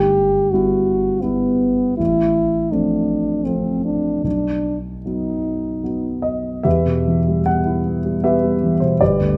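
In a flexible triple time, pushed and pulled with rubato, this melancholic and solemn romantic duo unfolds at an unhurried, breathing pace. A mellow, punchy French horn sings the melody up front in a classical style, holding the lead from the first moment until it falls silent at 6.2 seconds. A dark concert grand piano shares the foreground as accompaniment, its intimate, smooth, vintage tone grounded by deep bass and marked by audible action noise. The harmony shifts through several chords before a new passage begins at 6.7 seconds, where the piano continues alone until the fragment breaks off at 9.4 seconds. Close, detailed microphones capture both instruments within a moderate recital-hall reverb that lends the cut a sober, contemplative air.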